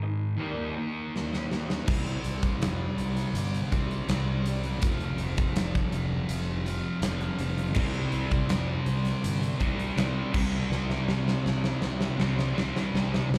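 A lo-fi electric guitar through a small old amp opens this dark, cathartic stretch of quiet-loud alternative rock with chorused, slapback-echoed arpeggios on Eb, alongside a sludgy, overdriven guitar riff, with a drum fill from a huge arena kit kicking in at 1.2 seconds. At 1.9 seconds the song erupts: a thick, bright fuzz guitar riff and a growly, punchy fingered bass with fuzz and overdrive drive through C5 and F5 under the kit's fat snare, punchy kick and pumping hall sound. The sludgy guitar returns up front at 7.7 seconds before a closing drum fill, all heard as a live gig through a club PA.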